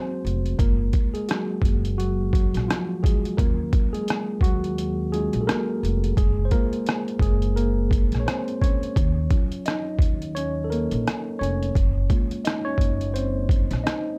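A worn, slightly out-of-tune tine electric piano opens this melancholic, hazy lo-fi hip hop excerpt at 0.0 seconds, playing up front with a mellow, cassette-tinged tone, low-pass filtering and plate reverb as it alternates between Ebm7 and Gbmaj7 chords. A woody pizzicato upright bass enters at 0.2 seconds, and a sampler-style trip hop kit arrives at 0.3 seconds, its muffled, pitched-down hi-hat, rim click and thumpy kick overdriven, compressed and placed forward. The groove sits at 86 BPM in 4/4 with a lazy 16th-note swing, and the overall production is dark with light reverb.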